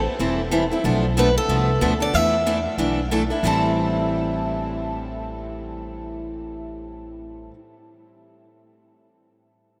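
An up-front picked steel-string acoustic guitar carries the accompaniment, entering at 0.2 seconds with a bright, boxy parlour tone from fresh strings. This is a swinging, bittersweet slice of acoustic string swing in the jazz manouche style, cut from a longer piece and moving at a brisk 185 BPM in 4/4 with a light swing on the eighth notes. A second picked steel-string acoustic guitar takes the melody in a higher register, its bright, boxy parlour sound also coming from fresh strings. Beneath them, a pizzicato upright bass with gut strings gives a woody, dark, thumpy foundation. The harmony moves through Am7, Bm7b5 and E7sus4 in A minor, and a new section begins at 3.4 seconds as the progression comes back to Am7. The whole performance is bathed in a huge, wet ambient reverb that places it in a vast, echoing space.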